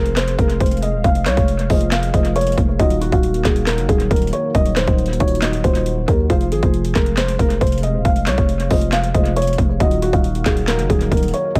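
An echo-heavy digital ambience surrounds this eerie, brooding trap excerpt, cut from a longer piece and running 11.6 seconds at 137 BPM in a half-time 4/4 feel. A felt-muted upright piano carries the melody between F4 and F5, its thick felt giving a soft, mellow, intimate tone with audible action noise, short sustain and a tape echo. A second, boxier felt-muted piano part sits in the background as accompaniment, also treated with tape echo. Underneath, a very quiet dark analog pad holds detuned sawtooth and triangle chords with a sub octave, slow attack, long release and chorus. Up front, a growling, buzzy 808-style bass with a fast attack and decaying tail pairs with an overdriven electronic trap kit of hard-clipped kick, sharp snare, handclaps and metallic hi-hats. The harmony in F phrygian alternates between Fm and Ebmadd9, tuned slightly low to A4 = 439 Hz.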